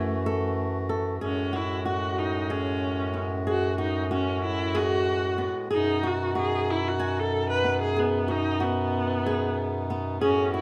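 A close, detailed recording with light reverb captures this short, hypnotic and pensive piece of contemporary chamber music, cut from a longer work. It moves in 7/8 at 186 BPM in eighths with a straight feel, sitting in F# dorian and tuned to A4 = 443 Hz. A single bowed viola carries the melody with smooth, even vibrato, up front yet with a slightly distant quality, while a hand-pumped harmonium holds sustained chords in a reedy, nasal, breathing tone. An acoustic flamenco guitar fingerpicks arpeggios above, and a bass clarinet in classical style anchors the bottom on a steady F#, placed up front. The harmony shifts from F#m7 to F#madd9 at 1.2 seconds, then to G#m over F# at 5.7 seconds.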